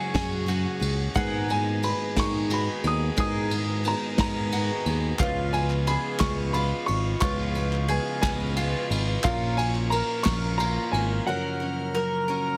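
The recording has a heavily compressed, radio-like sound with a light reverb, and this short cut from a longer indie folk piece feels uplifting and anthemic in a straight 6/8 with a building arrangement. A clear, woody upright piano carries the high melody, its action noise audible and its notes short, while a second upright piano, muted with thick felt, adds a dark, very quiet accompaniment underneath. A bright, shimmering twelve-string acoustic guitar picks out octave-doubled accompaniment, a bowl-back mandolin plays arpeggios through a digital delay, and a pipe organ on foundation stops holds thick, romantically voiced chords in the background. A round, up-front electric bass and a vintage brush kit, with punchy kick, snare and ride, ground the groove, the bass dropping out at 11.2 seconds. Crisp, saturated group handclaps join in the background from 5.2 to 10.4 seconds as the harmony moves from F#sus2 through G#madd9 and C#7 to A#m before settling on F#maj7.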